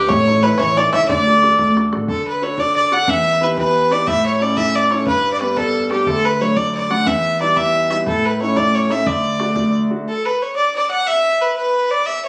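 In a 6/8 jig rhythm at 120 BPM, this bright, lively Celtic folk piece in D major, cut from a longer tune, features a rich, nasal fiddle with light vibrato and a smooth top carrying the melody up front. A clear grand piano accompanies over chords moving through A, D, Em and G. A twangy, fingerpicked banjo and a woody pizzicato upright bass sound only in the opening moments, a damped, tight bodhran sits in the background, and the fiddle carries on alone from 10.1 seconds, all captured on a phone in a studio room with moderate reverb and compression.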